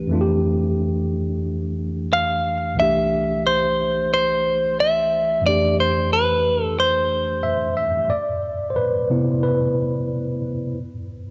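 Heard through the haze of a home cassette recording and bathed in a lush hall reverb, this short cut from a longer R&B piece has a smooth, warm mood and a relaxed swung sixteenth-note feel. A worn, slightly out-of-tune tine electric piano sits up front as the accompaniment, lightly overdriven and sounding as if it plays through its own built-in speakers, moving between Fmaj9 and Cadd9 chords. At 2.1 seconds a clean, picked electric guitar joins with a compressed, up-front melody, colored by its own cassette-tape character, and it falls away at 7.7 seconds. The closing section shifts to Cmaj7, with the electric piano carrying on alone in a brief solo until it stops at 10.8 seconds, leaving the final moments unaccompanied by chords.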